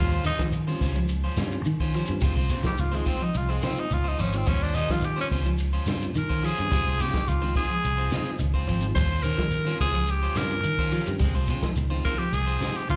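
Afrobeat with a hypnotic, joyful mood, heard as a live club performance through the venue's PA, where a raspy, gritty tenor saxophone solos up front over the whole 13-second excerpt, its vibrato and scooped notes carrying slapback echo. Beneath it a round, dark fingered electric bass anchors the groove alongside a vintage drum kit with a punchy kick and rolled-off top, entering at 0.2 seconds with a grainy shekere. A clean semi-hollow guitar plays phased arpeggios, a slightly broken-up electric guitar adds echoed stabs, and a flute-like tonewheel organ through a slow rotary speaker joins at 0.7 seconds in the background, all over a steady alternation between Eb13 and Dbmaj7 chords.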